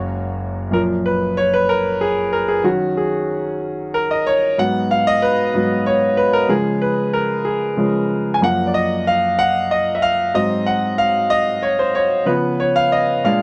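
In a straight 6/8 pulse, this soulful, uplifting gospel passage, cut from a longer piece, features a clear concert grand piano playing alone from 0.7 to 13.4 seconds, its deep bass and open, up-front sound moving through rich seventh chords and resting in light reverb.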